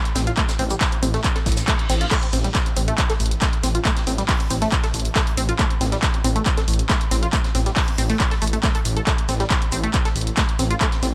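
Set in a small room ambience, this cut from a longer piece of driving peak-time techno runs at 138 BPM in a straight 4/4, in A minor, with an industrial, driving mood. An up-front electronic kick drum, analog and punchy, anchors the groove, while a punchy analog drum machine adds crash cymbal, handclaps and hi-hat, both re-recorded in a large room. A thick, menacing detuned saw bass holds A1 with a beating, sustained tone and sidechain pumping. Above it, a tight sequenced synth riff moves between G3 and A4 with an evolving filter-pluck character, colored by chorus, tube saturation, tape echo and its own sidechain pumping. Mid-forward yet very quiet, an acoustic rock kit with a medium-tuned snare, shaker and hi-hat sits in a big room with a rolled-off top. A very quiet reverse cymbal sweeps in from 1.5 to 2.1 seconds.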